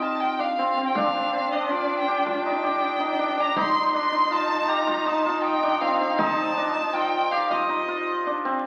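Ringing hammered dulcimer arpeggios sit up front in this shimmering, hopeful piece of contemporary chamber music in 7/4, cut from a longer work. A clear, focused violin carries the melody with vibrato, a dark, woody cello bows a second line beneath it, and a deep frame drum struck with hard hands sounds close and dry until 7.8 seconds. The ensemble rings out in a recital hall's reverb, heard through the crackle of a very old 78 rpm record.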